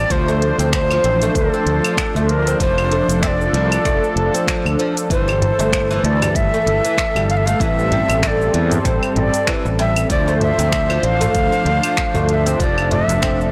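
A blown-out, overdriven sound with light reverb colours this earthy organic downtempo cut, taken from a longer piece and moving at 96 BPM in 4/4 with a gentle swing on the sixteenths. A breathy cedar flute in the Native American style carries the melody from the very start with a straight, tongued, expressive tone, its line trailed by digital delay. Beneath it, a smooth, detuned sawtooth pad holds sustained chords with chorus, tremolo and sidechain pumping, while a growly, up-front fretless electric bass, thickened by tube saturation, pumps along with it through Dm7, F6, Gsus2 and Am7. A woody, plectrum-plucked oud with double strings adds arpeggios through its own digital delay, set against a deep electronic kick and a tape-toned electronic kit of smooth hi-hat, cabasa, claves and finger snaps, its snare softly clipped. At 5.4 seconds a crisp, metal-shelled darbuka joins, close, dry and very quiet, deepening the warm, grounded mood.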